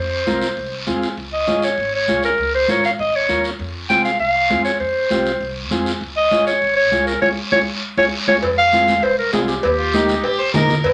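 An up-front, classical-style clarinet carries the melody in this fiery, driving cumbia excerpt at 199 BPM in F minor, over woody, thumpy pizzicato upright bass, a reedy vintage combo organ with light vibrato, close, ringing congas and a raspy, distant guiro, with a drum fill at 7.2 seconds leading into saturated, compressed cowbell and timbales from 8.4 seconds and a rich, bowed violin joining at 9.8 seconds, all set in a wet club reverb.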